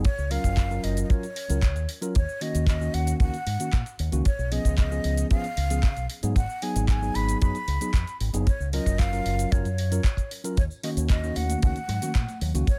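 A tight, dry kick drum sits up front in a straight 4/4 pulse at 114 BPM, driving this cosmic, groovy nu-disco passage in Eb minor, cut from a longer piece. Handclaps, hi-hat and shaker from a layered, tape-warm electronic house kit sit lower in the mix, carrying a small-room character. A bright fingered electric bass, run through an envelope filter, is also up front, while a mellow, clean tine electric piano supplies accompaniment with a sidechain pumping effect. Above them, a breathy silver concert flute plays the melody with a straight, tongued, slightly unsteady tone, close-miked and trailed by digital delay. The chords move from Gbmaj7 through Ebm7, Db7 and Abm7 before returning to Gbmaj7 and Ebm7, and at 10.6 seconds a very quiet, vintage-sounding layer of tambourine, bongos and congas joins in.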